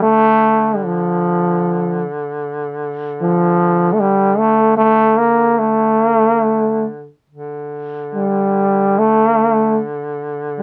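This Caucasian folk lament in D minor moves with a solemn, longing mood at a rubato pace of around 70-77 BPM in 3/4. A bright trombone carries the melody up front throughout, staying within the range of F3 to Bb3 and colored with a light vibrato and a pop-style phrasing. Beneath it, a clear duduk holds a drone on D3 from 0.0 to 10.6 seconds, sitting well back in the mix and shaped with vibrato and scooped notes in a folk style. Both instruments have a vintage character. A moderate, short booth ambience keeps the sound close and intimate in this brief excerpt cut from a longer piece.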